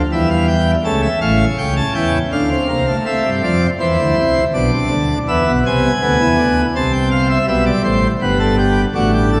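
A classical, baroque-style three-part fugue for solo pipe organ, solemn and contemplative, moving at 81 BPM in a straight 3/4 and cut from a longer piece. The full plenum registration with its brilliant mixtures sits up front, sounding from G1 to A5 within a long, wet church reverb. The music opens in D minor and shifts to A minor at 3.1 seconds, with the harmony passing through chords such as A7, Bm and E7 before the passage breaks off at 9.4 seconds.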